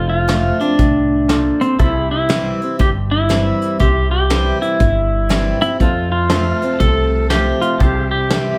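Honky-tonk and classic country with a heartfelt, nostalgic swing, where an up-front pedal steel guitar carries the melody with clean, compressed slide lines and volume swells over a very quiet second pedal steel holding sustained chords, a bright, full-bodied picked dreadnought acoustic guitar, a brilliant, intimate upright piano with audible action noise, a woody, thumpy pizzicato upright bass and a distant brush kit with a fat snare, while a rich, smooth bowed string section slips in at 5.8 seconds, all set back in a roomy studio reverb.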